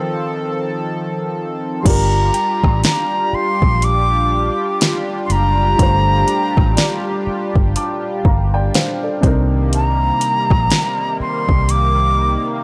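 This moody, longing contemporary R&B fragment opens on a mellow, dark grand piano, a shimmering, chorused pulse-width pad with sidechain pumping and a very quiet, round pluck texture, before a distant yet up-front concert flute melody, airy and touched with analog delay, enters at 1.8 s and is joined at 1.9 s by a foam-muted, amped electric bass and a produced, swung R&B kit with a soft kick, fat snare and metallic hats, the whole captured in a dry, gritty recording with transformer saturation and digital ambience.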